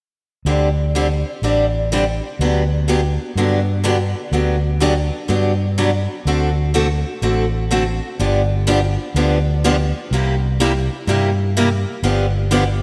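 A warm, amped fretless electric bass sits up front beside a bright, boxy picked parlour steel-string acoustic guitar comping through this charming, playful jazz manouche swing excerpt at 124 BPM in 4/4, moving from D7sus4 and Gmaj7/D harmony into a G mixolydian passage of G7 and C7 from 8.2 s, all bathed in a dreamy, lush hall reverb before the guitar stops at 12.6 s and the bass at 12.8 s.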